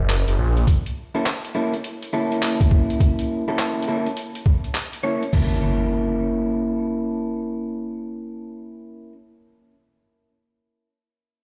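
Glitch hop at 103 BPM with a swung 16th feel, this funky, gritty excerpt opens on a thick, swirling detuned saw bass, saturated and phased, that lasts only until 0.7 seconds, when an overdriven, thumpy electronic kick takes over beside a pitched-down, compressed sampler-style kit of crash, handclaps and hi-hat. From 1.1 seconds a slightly broken-up electric guitar through a small old amp plays up-front picked stabs, pumping with sidechain and colored by a low-pass filter and digital delay. The harmony moves from F#7#9 to A#dim at 5.3 seconds as an electronic impact arrives, all heard in a stony, bare-room space as if through a big sound system.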